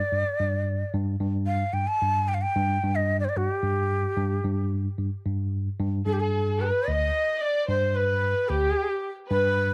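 Warm and passionate, this short excerpt from a longer Persian piece moves at 74 BPM in a straight 6/8, set in dastgah Homayun on G. A breathy, bright end-blown ney carries the melody from the opening, its reed-cane tone marked by vibrato and a crisp attack, sitting up front in the mix. Beneath it, a bell-like tine electric piano holds down the bass in a low register, its clean, direct sound also placed close to the listener. At 6.1 seconds a studio violin section enters with a second line, bringing a gut-string, period-style timbre that is reedy with a smooth top, bowed as an ensemble. The recording has a dry, close 1970s studio character with a small room ambience.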